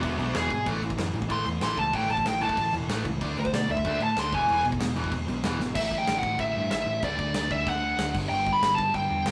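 A smooth, dark overdriven lead guitar sits up front and solos through the first 5.8 seconds of this rowdy, upbeat punk rock passage cut from a longer piece. A biting rhythm guitar hammers out a riff until 5.7 seconds, while a sludgy distorted guitar churns in the background beneath a growly, amped picked bass and a big acoustic kit with a medium-tuned snare, a punchy kick and crashing cymbals. A drum fill at 5.6 seconds launches a new section, and the whole band rings through a stone room's reverb in a rough rehearsal-room recording.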